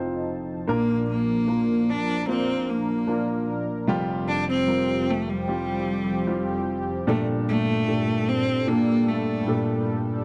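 A polished grand piano and a bright, evolving pad of sawtooth and sine tones open this tender, emotional pop ballad at 75 BPM in Bb major, the pad holding sustained chords with a slow attack, chorus and tremolo beneath the piano's up-front accompaniment. At 0.7 seconds a single bowed cello enters close and focused, singing a clear vibrato melody touched by slapback echo as the harmony moves from Bb to Fsus2 to Gmadd9. The dry, close 1970s-style studio sound carries a moderate small-room reverb, and the passage is cut from a longer piece.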